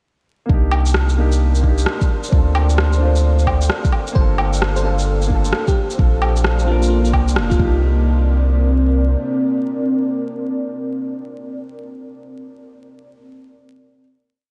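A dreamy, reverb-soaked mix with vinyl crackle sets a wistful, rainy mood for this short future garage piece with a shuffled swing. A dark, woody upright piano with vintage sampler grit plays held rootless chords with syncopated pushes, over a deep, detuned ambient pad and round, gliding sub bass notes that pump with the sidechain. A muffled two-step kick and a skittering beat of shaker, woodblock and rim drive the groove until 7.8 seconds, while a sparkling, bell-like FM electric piano adds short background phrases from 4.2 seconds before a final hit rings out.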